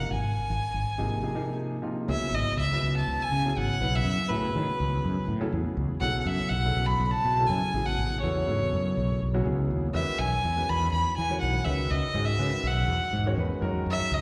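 A funky, slick stretch of electric jazz fusion opens with all three parts sounding at once: a bowed violin carrying the melody, a grand piano comping beneath it, and a fretless electric bass holding down the low end. The violin, a single player with light vibrato, has a nasal, earthy tone that sits up front yet carries a distant quality, and a slapback echo trails its lines as it moves between B4 and B5. The piano is warm and shares that same slapback echo, filling the middle register with chords that pass through C#m7, F#m11, B9sus4 and E69 before settling on F#13 near 13.6 seconds. The fretless bass is dark, round and direct, amped and up front with a subtle chorus, reaching down to Ab1. The sixteenth-note swing gives the groove a loose lilt, and the whole passage sounds like a live gig heard through the venue's PA, with a small room ambience, light reverb and the bloom of a recital hall. 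Cut from a longer piece, it runs about 14.2 seconds.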